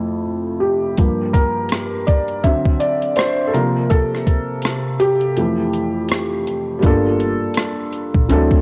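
A soft, felt-muted upright piano with audible action noise leads this reflective, hazy lo-fi hip hop fragment, its cassette-tape tone shaped by a low-pass filter sweep, while a gritty, pitched-down boom bap sampler kit of thumpy kick, hi-hat and rim click joins at 1.0 seconds, a break arrives at 5.4 seconds, and a woody, dark pizzicato upright bass enters at 6.8 seconds, all in a small, lightly reverberant room.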